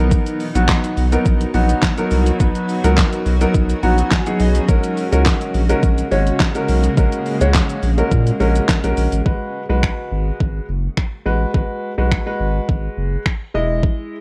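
This bittersweet, driving dance-pop excerpt opens with an intimate concert grand piano, a deep, thick sub bass and a cloudy granular pad, with a pop drum kit entering almost at once. The piano plays accompaniment close up, its action noise audible, and breaks into a short fill at 3.5 seconds. The saturated sine bass sits up front with a fast attack, while the blurred, detuned pad drifts in the background with its own reverb until it stops at 9.2 seconds, just as the harmony moves into a new passage. Piano, bass and pad all breathe with sidechain pumping. The layered electronic kit is overdriven, pairing a knocking kick and fat snare with finger snaps, handclaps, hi-hat and shaker. The mix is dry and coloured by worn cassette tape, whose warbly pitch drift gives the whole piece an aged, wavering character.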